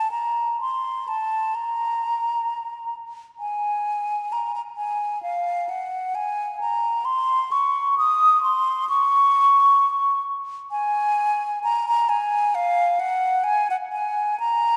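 In a rubato 4/4 at 66 BPM, this grave, flowing baroque-style classical fantasia in Bb minor, cut from a longer piece, features a solo silver concert flute, up front and hollow, mellow and airy with vibrato and tongued notes between F5 and Eb6, heard from 0.0 to 14.8 seconds in a wet church reverb with a 3.1-second decay.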